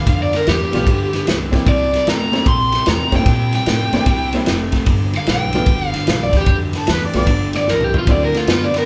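This brief cut from a longer piece sounds like a band playing live together in one large studio room, with a moderate reverb lending the ensemble a natural sense of space. It is a rollicking yet laid-back electric blues shuffle with swung eighth notes. Up front, an overdriven, compressed electric guitar carries the picked melody with a dark bite, while a hollow-bodied semi-hollow guitar grinds out a low overdriven riff underneath. A worn, slightly detuned upright piano adds woody, short-sustained accompaniment, and a pizzicato upright bass with steel strings anchors the bottom. An acoustic kit, with a punchy kick and a medium-tuned snare, drives the groove on ride cymbal and toms, and plays a drum fill at 7.7 seconds. Just before that fill, at 6.8 seconds, a warm harmonica slips in a brief jazz-flavoured second line full of vibrato and scooped notes. Underneath, the changes move from G7 through C9 and back to G7 before arriving on D9.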